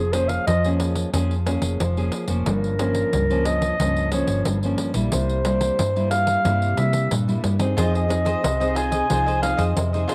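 Cut from a longer piece, this home recording on cassette has a small-room ambience and a moderate spring reverb. It is a nostalgic, bittersweet blend of samba and choro with a straight feel in four. A mellow clarinet carries the melody as a solo in a classical style, its top end smooth. Beneath it, a nylon-string guitar sits up front, fingerpicked on fresh strings with audible finger squeak. A dark, round hollow-body electric bass adds an amped low end, and a close, dry pandeiro jingles under hard hands. At 7.8 s a crisp, picked cavaquinho joins as the chords settle on Fm7, and the passage ends at 10.1 s.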